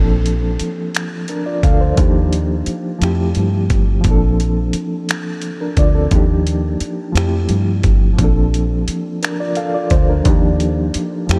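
Slow six-eight R&B in Bb major at 58 BPM, this intimate, warm excerpt from a longer piece drifts through lush Bbmaj9, Ebmaj9 and Fmaj9 chords. A reedy, worn electric piano, slightly out of tune and lightly overdriven with fast tremolo, sits up front as if heard through its built-in speakers, over a dark, round, foam-muted fingered bass. At 0.3 s a gritty, compressed sampler-style kit joins with finger snaps, hi-hat and a thumpy kick, all in light reverb and digital ambience.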